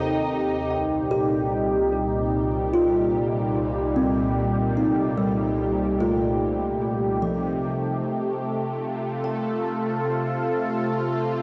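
Reflective and spacious, this ambient passage, cut from a longer piece, drifts at 74 BPM in a straight 4/4. A smooth, detuned sawtooth pad sits up front holding soft-attack chords, with chorus and a moving notch colouring its tone. A woody, hollow-sounding kalimba plays mellow arpeggios with a fingertip pluck, its ringing notes carried by an analog delay. A distant, lush violin section adds a bowed, vibrato-rich texture only in the opening 0.7 seconds, after which the kalimba plays on until 11.1 seconds and the pad until 11.4 seconds. The harmony moves from Cm/Eb to Eb/C and then F/C, all set in a wet hall reverb and the soft grain of a home cassette recording.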